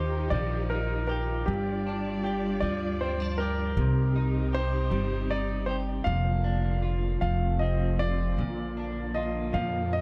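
Six-eight pop ballad in Bb major at 52 BPM, heartfelt and romantic, where a clear, intimate concert grand piano carries the melody with long sustain, audible action noise and a digital delay over double-tracked, compressed clean electric guitar recorded direct, a distant bowed string section with vibrato and portamento holding soft-attack chords, and a woody, thumpy pizzicato upright bass up front, all set in a dark, warm production with light small-room reverb.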